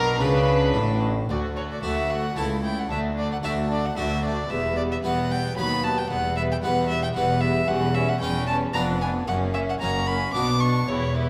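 Stormy and dramatic, this baroque-style concerto movement in 3/4 moves at 112 BPM, opening in D major before turning toward B minor from 7.7 s. An up-front solo violin with a gut-string, period-style tone carries the melody, joined far beneath it by a very quiet violin section of dark, nasal character that also plays the melody. A second violin section supplies a second line in the background, while the violas fill in the accompaniment alongside a close-miked, dry harpsichord whose plucked Flemish-style sound is full with two sets of strings. Cellos with a smooth top and a rich, reedy double bass section anchor the bass, all the strings bowed with a chamber-ensemble intimacy. The harmony grows tense toward the end, passing through a half-diminished chord and a diminished chord before settling on F# and returning to Bm at 10.3 s, all wrapped in the wet reverb of a recital hall in this short cut from a longer piece.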